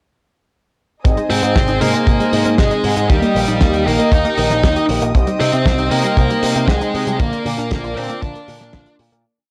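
An italo disco piece with a romantic, sunny mood, built on a dry, tight four-on-the-floor kick, a fat-snared disco beat with closed and open hats, and a punchy, octave-jumping picked bass run through an envelope filter and tube saturation. Up front, an overdriven, dark lead guitar plays a motif-based melody partly doubled in octaves, while in the background a detuned sawtooth pluck runs an eight-step arpeggio through cassette tape and analog delay, chorused synth brass adds held chords with syncopated pushes, and a reedy, period-style string section sustains a smooth pad over chords moving from Ab to Eb, Cm and Bb. The gritty, small-room recording has a cassette character, and it fades out from 6.5 seconds to its close at 9.2 seconds.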